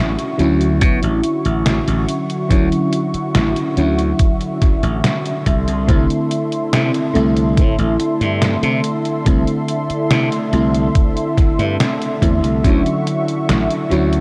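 Vaporwave at a slow 71 BPM in 4/4, dreamy and faded, moving from Dmaj9 to C69 at 5.5 seconds and back to Dmaj9 at 12.6 seconds in this short cut from a longer piece. A mellow FM electric piano with a soft pad layer carries the accompaniment through analog chorus, cassette tape and tape echo, while a thick, nasal sawtooth unison pad holds sustained chords under chorus, and a growly, punchy slap bass sits up front. An electronic kick drum enters at 0.8 seconds with a thumpy, forward presence, and a detuned 8-bit digital drum machine adds hi-hat and a medium-tuned snare bathed in gated reverb, all within a light reverb.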